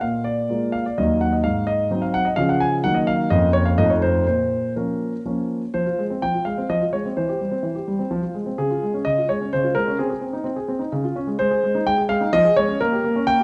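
A solo concert grand piano opens this serious, dramatic fragment of a classical-period sonatina in three-quarter time, sitting up front with deep bass, long sustain and audible action noise that lends it an intimate, natural feel. Its minor-key harmony moves through restless seventh chords before shifting to a new key at 5.7 s for a contrasting second section that runs until the cut at 13.4 s. A moderate recital-hall reverb and a dark production frame the playing.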